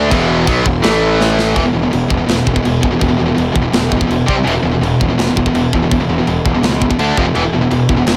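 A high-gain distorted guitar sits up front in this aggressive, heavy metal excerpt, its bright, picked riff carrying the weight of the music in a straight 4/4. Behind it, a second distorted electric guitar plays a riff with overdrive, set back in the background, while a very quiet, double-tracked, overdriven guitar adds a biting layer only until 1.6 s. A growly fuzz bass, picked and overdriven with a mix of direct and amped tone, anchors the low end. The tight metal drum kit, up front with a tight kick, medium-tuned snare, crash and china cymbals, has a mid-forward, rolled-off top in a studio room, and a drum fill at 1.2 s leads into the longer second section. The chords move through E5, A5, C5, D5 and F5 under light reverb, and the piece is cut from a longer work.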